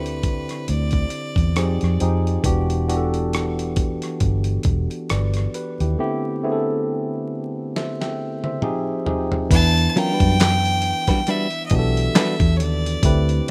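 A rough home-demo mix with vinyl crackle and digital ambience frames this sultry, late-night neo-soul R&B cut in E minor at 68 BPM with swung 16ths, where a barky tine electric piano through a combo amp and a dark, foam-muted fingered bass carry the D13sus4, Fm9 and Em9 changes under a gritty sampler-style kit with thumpy kick, fat snare and handclaps, while a nasal, earthy fiddle with airy bow sings for the opening two seconds, drops out until after the break and drum fill, then returns at 9.5 seconds, joined at 10.0 seconds by a clean picked electric guitar adding a brief second line.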